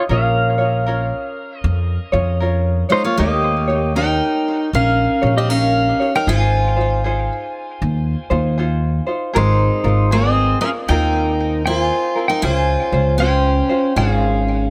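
A lazy swung 4/4 carries this languid, dreamy Hawaiian excerpt, where a twangy, compressed pedal steel guitar sits up front with slide and volume swells under a touch of delay, a light fingerpicked tenor ukulele and a woody, thumpy pizzicato upright bass support it, and a bright, full-bodied picked steel-string acoustic guitar enters at 2.9 s with its own delayed second line, all inside a small room ambience.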